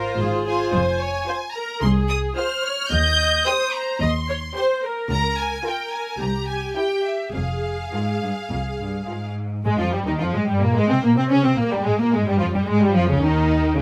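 A close, detailed recording with light reverb captures a restless, dramatic, quick classical-period movement for string orchestra in F minor at 110 BPM with a rubato feel, where a warm second violin line, an up-front viola accompaniment, a focused cello section and a rich, smooth double bass section sound from the start, joined at 0.5 seconds by an intense, distant first violin melody reaching up to G6, before the music shifts into a new section at 9.7 seconds in this cut from a longer piece.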